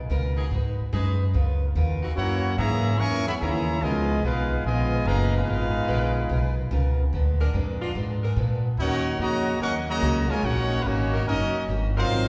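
A clear, up-front trumpet section carries the melody from 2.2 seconds, joined by a brilliant, close-miked trombone section on a second line, over a woody pizzicato upright bass, a picked steel-string acoustic guitar with finger squeak in the background, and sustained chords from an edgy saxophone section, all in an energetic, brassy swinging jazz excerpt at 145 BPM moving through rich chords like Db13 and Gb13, heard from further back in a wet scoring-stage reverb.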